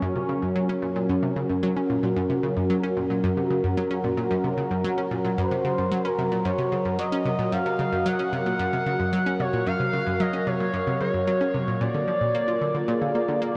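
Ambient, sequencer-driven space music with a cosmic, expansive mood, taken from a longer piece and drenched in a huge, dreamy reverb. A resonant, evolving pad holds sustained chords over a bright, round analog pluck riff with chorus and tape echo, both running from the start. At 5.4 seconds a smooth, mellow portamento lead enters with vibrato, lush chorus and echo to carry the melody, and the harmony moves from Gb to Bb7 at 11.8 seconds.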